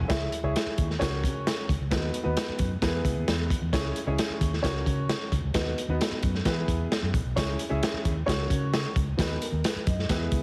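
A crunchy, saturated breakbeat kit sits up front in this driving, urgent slice of uptempo 1960s-style soul at 132 BPM, its tight kick, medium-tuned snare and hi-hat carrying a gritty, rolled-off top. Beneath it, a dark, foam-muted fingered electric bass holds a round low end, while a woody upright piano with long sustain plays a repeating C#m, F#/C#, B/D#, E progression in C# dorian. Light reverb and heavily compressed, radio-style sound frame this fragment of a longer piece.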